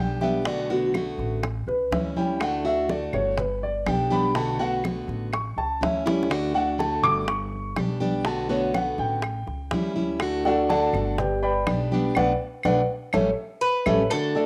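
Cuban son in a relaxed, danceable guajira vein, this fragment is led by a dark, mellow grand piano playing arpeggios over a boxy picked acoustic guitar, both up front with a cassette-tape tint, while a thumpy, gut-strung upright bass plays beneath a Bm7–A7–D–G cycle. In the background sit damped, soft-handed congas, tight high-tuned bongos with cowbell, and woody claves, with a drum fill at 6.1 seconds and a band accent from 12.2 seconds. The metallic, double-strung Cuban tres enters only at 13.6 seconds, all within a home-recorded room washed in wet spring reverb.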